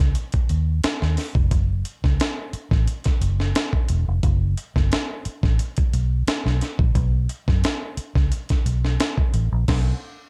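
A compressed, gritty breakbeat kit and a foam-muted fingered electric bass start together, setting up a driving, sly funk groove at 88 BPM in straight 4/4. The drums have a sampler-style, pitched-up character, with a thumpy kick, a high-tuned snare, hi-hat and crash cymbal, and a large-room sound re-recorded into the kit itself. Underneath, the vintage bass sits in F# dorian between E1 and F#2, its amped tone dark, round and punchy. Both parts are mixed up front in a dry, dark and warm production with little reverb. This cut from a longer piece closes on a band accent at 9.7 seconds.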